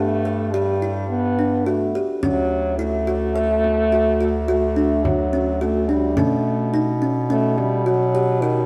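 A mellow French horn with light vibrato carries a second line in this brief fragment of contemporary chamber music, sounding together from the start with a kalimba's soft, woody arpeggios and a clear bass clarinet holding the low register. The mood is urgent and restless, set in an uneven 7/4 with a straight feel, and the harmony moves from G to Dmaj7 at 2.2 seconds and to B7sus2 at 6.2 seconds. The horn has a vintage, classical character and sits up front, while the kalimba's fingertip plucks sound hollow and short, like a small box resonating. A close, dry frame drum joins at 2.2 seconds with an acoustic, warm tone and plays until 8.3 seconds. The ensemble is heard from further back in the room, bathed in a moderate plate reverb, with a faint mains hum beneath.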